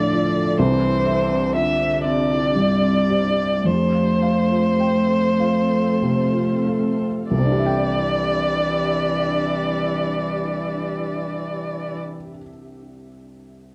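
A veiled, con sordino violin played by one player sits up front with plate reverb, carrying a hopeful, intimate melody in this rubato 3/4 neoclassical fragment. The tempo slows through the opening. The violin is joined by a dark muted cello's second line, a felt-muted upright piano with audible action noise that rings on to 13.7 s, an ethereal, detuned pad holding chords in the background, and a soft-malleted, round marimba arpeggiating with slapback echo until 7.2 s, all within a dark, warm studio sound.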